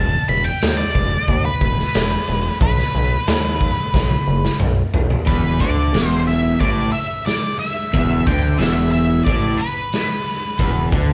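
Gritty and brooding, this short cut from a longer blues rock and southern rock piece moves at 90 BPM in E minor, with a band playing live in one room under a moderate large studio reverb. A dark, fuzzed octave lead guitar takes a picked solo from the start over a sawtooth synth bass with a resonant filter pluck and oscillator sync, while a raw garage drum kit, with a punchy kick and a saturated, pumping stone-room sound, enters at 0.3 seconds and plays a fill leading into the second section. At 5.3 seconds a crunchy, double-tracked overdriven rhythm guitar joins up front with a low picked riff.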